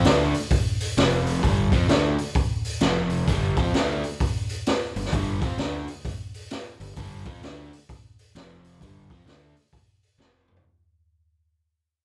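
A live, lightly reverberant room sound frames this gritty, brooding slice of blues rock with a southern rock edge, cut from a longer piece and fading out across its whole length. A crunchy, bright overdriven guitar sits up front, double-tracked and picked, driving a swung riff that moves between F5 and G5 power chords. Beneath it, a fuzzed, growly fingered electric bass stays in the background with a punchy, overdriven low end. The raw garage drum kit is acoustic and saturated, with a punchy kick, a medium-tuned snare, hi-hat and toms, a rolled-off top, a mid-forward balance and a small-room character. A drum fill at 10.2 seconds closes the passage as the band returns to F5.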